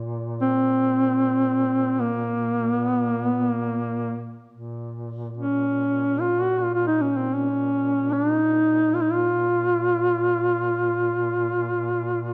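Caucasian folk lament in free time and Bb minor, longing and solemn. A mellow, distant duduk holds a soft-attacked, roomy drone on Bb2 from the start, and at 0.4 s a warm, punchy duduk enters up front with the melody, ranging from Bb3 to Gb4 with vibrato, scooped notes and a smooth top. The dark production sets both in moderate scoring-stage reverb, and the piece is cut from a longer work.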